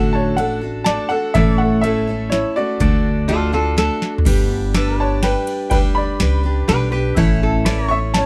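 A straight waltz at 124 BPM drives this sunny, nostalgic snippet of honky-tonk and classic country, with a booming analog drum machine coming in at 0.4 seconds with its deep kick, tonal snare and metallic hats, and a thumpy, woody pizzicato upright bass underneath. A brilliant, up-front upright piano carries the melody with its action noise audible, over a full-bodied, freshly strung jumbo acoustic guitar picking the accompaniment and a clean, compressed pedal steel holding sustained chords in the background as the harmony moves among D, A and G. A nasal, metallic lap resonator guitar, slid with fingerpicks, adds a second line at 3.3 and 6.7 seconds, and a drum fill leads into the second section, all in a dry, close 1970s-style studio sound with light reverb.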